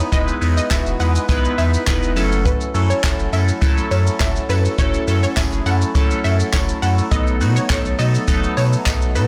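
A glossy, retro chorused polysynth with phaser and sidechain pumping sits up front in this driving, confident dance-pop excerpt, moving from Emaj7 to F#m7 to B7 over a deep, saturated sub bass, a lush detuned unison pluck melody with digital delay in the background, an airy jazz brush drum kit with punchy kick, handclaps, hi-hat and shaker, and a very quiet jingly tambourine entering at 0.7 seconds, all within a blown-out, overdriven mix.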